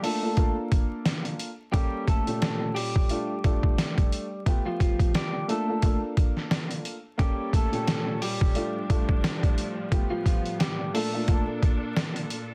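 Boom-bap hip-hop with a gritty, reflective mood, built on an up-front, pitched-down sampler-style kit with a thumpy kick, medium-tuned snare, hi-hat and tape-warm grit, all swung on the 16ths. A slightly broken-up, picked electric guitar carries the melody through spring reverb and delay until 11.4 seconds, while a dark, boxy grand piano with long sustain supplies the accompaniment over a moody progression of major sevenths and altered dominants. At 7.2 seconds a bright, lush bowed string section enters with intense, vibrato-laden sustained chords, and the dense, heavily limited master is dusted with vinyl crackle and light reverb in this short cut from a longer piece.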